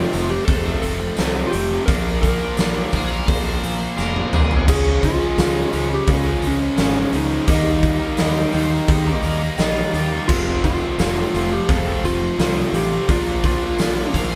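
Classic rock with a confident, swaggering straight feel, cut from a longer piece and played live in one lightly reverberant room. A dark, compressed, slightly broken-up lead guitar carries the melody over a stack of picked riff guitars (a bright cranked stack, a tight distorted one and a very quiet double-tracked sludgy layer), with a growly fuzz fingered bass beneath and a huge, natural arena drum kit up front, its punchy kick and toms joined by a faint jingly tambourine. A second cranked stack guitar line with phaser enters at 3.0 seconds, and after a drum fill at 4.0 seconds a very quiet, gritty, reedy electric piano with fast tremolo comes in through a combo amp at 4.7 seconds.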